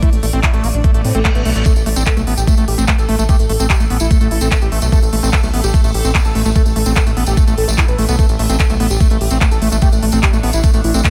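This intense, hypnotic psychedelic trance passage opens straight into a steady, straight groove. An up-front, knocking electronic kick drives it alongside a layered electronic kit of handclaps and crisp hi-hats, and a round, deep analog bass, mellow and detuned, joins almost at once. Above it, a squelchy, gritty acid bass riff with resonant filter plucks cuts through distortion and dub echo, pumping against the kick. A thick, dark unison lead carries the melody with vibrato and a sub octave, shaded by phaser, dub echo and sidechain pumping. Meanwhile, a morphing wavetable pad holds bright sustained chords in the background with a slow attack, phaser and its own reverb. An electronic reverse cymbal flashes by at 1.0 s, a jingly acoustic tambourine enters at 1.7 s, and the overall mix stays dry, with the drums re-recorded in a small room.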